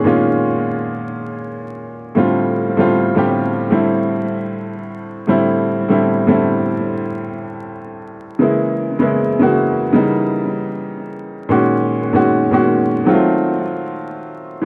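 Melancholic and hazy, this short hip hop passage, cut from a longer piece, moves at an unhurried pace with a swung sixteenth-note feel in 4/4. A lone upright piano carries the whole 14.7 seconds, its woody, smooth, vintage tone sitting up front with a short sustain. A low-pass filter rounds off its top end, and an analog delay adds echoes behind the chords. The harmony drifts through colorful, unsettled voicings, from G#sus2 through C69/A and A#m7b5 to a tense D#7b9, before landing on F7b9 near the close. A moderate plate reverb, dark production and a bed of vinyl crackle wrap the piano in a dusty, late-night atmosphere.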